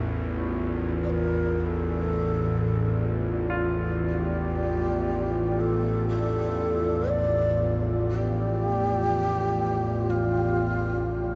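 A low, string-like bowed drone and a deep, moody pad open this dark ambient excerpt together, hanging in free time over a single G7sus2/A chord that gives the whole passage a vast, ominous weight. The drone sits up front with a tense, sawtooth edge and vibrato, while the detuned pad spreads above it with chorus and a sub octave that darken the low end. Far back in the mix, a clear but worn grand piano traces arpeggios with short sustain, its notes scattered by a diffuse ambient delay. At 1.0 seconds a breathy, mellow shakuhachi enters up front with a long melody, its bamboo tone marked by tongued chiff and vibrato, and its rolled-off highs trailing into delay. A huge reverb with a decay of 7.8 seconds drenches the sound, and the top end is held in, leaving the cut from a longer piece feeling murky and immense.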